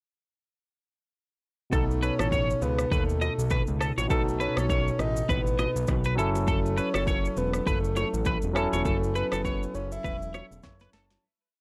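From 1.7 s a sultry, mellow afrobeats groove begins with every part together: an overdriven electronic drum kit of soft kick, sharp snare, syncopated rim clicks and shaker, a fat sawtooth analog bass line bouncing underneath, barky tine electric piano holding spread chords, a twangy clean guitar figure through analog chorus and tape echo, faint bright congas and bongos, and a breathy flute-like synth lead carrying hook phrases with vibrato, all in a dry, gritty mix that fades out from 8.9 s as electric piano and drum fills close the piece at 11.2 s.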